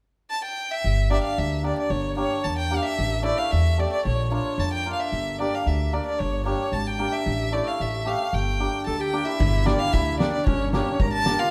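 A close, vibrato-rich violin opens this soulful, festive klezmer excerpt at 0.3 s, carrying the melody in a straight two-beat feel over woody, thumpy pizzicato upright bass on gut strings and a bright, shimmering hammered dulcimer. Near the end a breathy clarinet with light vibrato adds a jazz-tinged second line from 8.9 s, and an oversized, low-tuned drum kit with dark cymbals, a fat snare and a punchy kick arrives at 9.4 s, its gritty, saturated sound rolled off at the top. The band plays live together in one room, wrapped in a moderate stone-room reverb.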